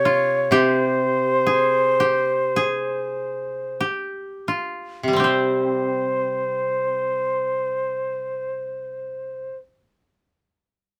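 This excerpt of Japanese chamber music centers on a breathy, reedy shakuhachi carrying the melody, its bamboo tone straight and soft-edged with rolled-off highs, set up front over two kotos. The mood is austere and calm, moving in a free, rubato 4/4 between 44 and 66 BPM in C miyako bushi, tuned slightly below standard pitch. One fingerpicked koto, close and woody, plays a second line in the middle register, while a brighter, dry koto supplies accompaniment lower down. The music slows through its first section until about 5.2 seconds, when a second section begins, and all three parts play together throughout. Close, detailed microphones and light reverb give the ensemble an intimate, clear presence.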